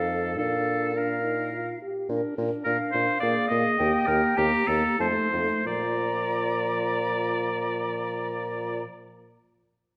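Classical-period wind quintet writing in 3/4 and Bb major, graceful and cheerful, moving quickly at 88-107 BPM with a rubato feel and easing into a slowdown from 1.2 to 5.7 seconds in this short fragment of a longer piece. An airy, distant silver flute with vibrato carries the melody high above a clear, up-front oboe on the second line, while a mellow, roomy French horn and a soft-attacked clarinet sitting in the background fill in the accompaniment over a close-miked bassoon bass. All five play throughout in a wet recital hall, the harmony passing from Bb through Bb7, Eb and F7 before settling back on Bb at 5.7 seconds.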